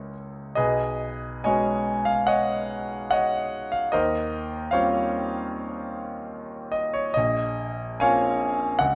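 A rubato pulse around 74 BPM in 4/4 carries this serene, hazy impressionist solo piano fragment, where a clear, intimate concert grand with deep bass and audible action noise sits up front in a moderate recital hall reverb, drifting through lush Dbm6, B69, Eb13 and Bbm9 harmonies over its 8.9 seconds.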